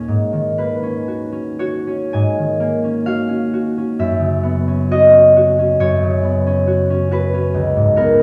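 A classical solo harp piece in G# minor, this mysterious, wistful passage unfolds in a rubato 4/4 at about 54-69 BPM, cut from a longer work. The concert harp sits up front, thumb-plucked with an acoustic, ringing tone that spans C#2 to G#5 and moves from a G#m11 chord at the start to F#9sus4 at 4.0 seconds before settling toward C#7 at 7.5 seconds, shortly before the close at 8.2 seconds. A wet recital hall reverb with a 1.4-second decay surrounds the instrument, giving the sense of listening from further back in the room.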